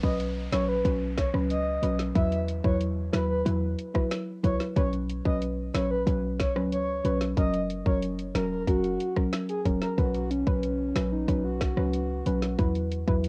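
Dancehall at 92 BPM in B major, summery and bouncy, this short cut sets a breathy, flute-like synth lead with chorus, tremolo and analog delay over a soft, round pluck, a deep, boomy 808-style bass and an up-front island pop kit of tight kick, woody snare, finger snaps, rim clicks and hi-hat, with a faint downlifter in the background until 4.8 s and a lower sub-octave lead line taking over at 10.0 s, all moving through Bsus2, Esus2 and F# with the lightly reverberant, tape-tinged feel of a home cassette recording.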